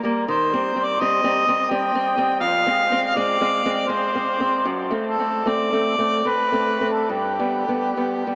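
Solemn and melancholic, this short romantic duo for harmonica and classical guitar unfolds in C minor at a rubato 3/4, drifting between 67 and 86 BPM. The nylon-string guitar opens at 0.0 seconds with a small, warm, fingerpicked acoustic accompaniment spanning F2 to C4. The harmonica enters at 0.3 seconds to carry the melody in a classical style, its warm, distant, roomy tone touched with light vibrato and an analog delay. Beneath it the harmony moves from Cm/Eb through Fm and a bare D7 to G, settling on that chord at 7.1 seconds. A huge ambient reverb with an 8.7-second decay soaks the whole mix, lending it a dreamy haze filtered through an AM-radio sound.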